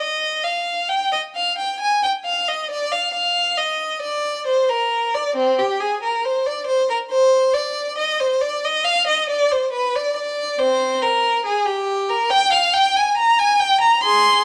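The rhythm moves in a flexible rubato over a 4/4 metre, letting phrases stretch and settle with a flowing, solemn character. This is a baroque-style suite movement for unaccompanied violin, cut from a longer piece, with a single player carrying the music from 0.0 to 14.4 seconds. The bowed violin has a rich, smooth tone coloured by vibrato, and its line stays even as it ranges from C4 to C6. Close, detailed microphones place the instrument up front, while a moderate recital hall reverb of 1.4 seconds lends it a slightly distant halo. The whole passage sits within one continuous section, giving it the feel of a single flowing, solemn statement.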